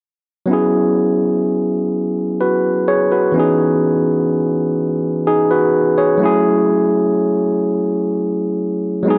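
R&B in a slow 6/8 at 42 BPM counted in dotted quarters, this yearning, sultry fragment from a longer piece is tuned to A4 = 441 Hz. A solo overdriven tine electric piano plays from 0.5 to 9.2 seconds, moving through F#9sus4, C#m7 and F#m9 across a range from E3 to C#5. Its barky, gritty tone comes through a combo amp and sits up front, bathed in a moderate plate reverb.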